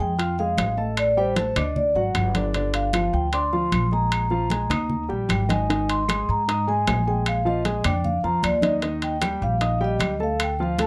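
Afro-Cuban jazz with a sultry, driving feel, this short clip from a longer piece sets a mellow, metallic soft-mallet vibraphone melody over intimate grand piano accompaniment with audible action noise and a dark, woody pizzicato upright bass up front, while bright congas and ringing metal-shelled timbales join at 0.2 seconds and background claves at 0.6 seconds, in a close, dry recording.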